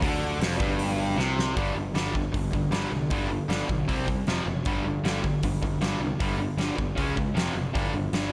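A straight, driving 4/4 groove from a huge arena drum kit, with its punchy kick and fat snare pushed up front in a pumping hall sound, propels this swaggering, energetic hard rock passage cut from a longer piece. A drum fill at 1.2 seconds kicks off the second section at 1.6 seconds. Throughout, a cranked stack guitar and a second distorted electric guitar play bright, overdriven riffs over power chords moving through F5, G5, C5 and C#5, while a growly, fuzz-drenched picked bass pounds out the low end, all set in a moderate large-studio reverb.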